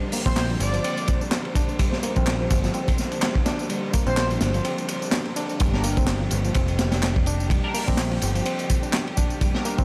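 A swung, crunchy breakbeat kit with a tight kick and high-tuned snare drives this energetic, gritty breaks excerpt alongside overdriven electronic tambourine and handclaps, a picked electric bass from 0.3 seconds, a barky, reedy electric piano riff, dark bowed strings pumping in the background, brief airy phrases from a dreamy chorused lead, and, after a short break at 4.7 seconds, a nasal band-passed chord stab from 5.7 seconds.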